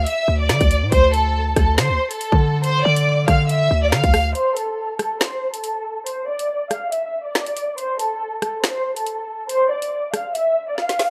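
A lush, distant bowed violin section carries the melody with expressive vibrato through a low-pass filter, setting an ominous, cold mood in this half-time drill hip hop excerpt at 140 BPM in D minor. A punchy, heavy 808-style sine bass with a fast attack and a noise layer hits hard over a Dm7 chord until 4.3 s, then drops away for a break. The electronic drill kit, with its hard-clipped kick, woody snare, metallic hi-hats, finger snaps and rim clicks, keeps going in a rough home demo mix with light reverb, and a short drum fill arrives at 10.8 s.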